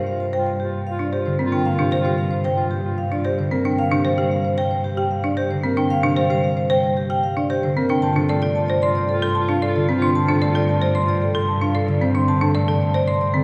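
A ringing, metallic vibraphone with medium motor vibrato carries the melody up front over dry, rustic arpeggios from a hard-mallet folk marimba, a mellow fingerpicked concert harp and a rich bowed cello holding G2, while a clear clarinet adds a second line from 0.1 to 3.6 s and again from 8.0 to 12.1 s, the whole set in the wet reverb of a church for this urgent yet meditative fragment of minimalist classical pattern music.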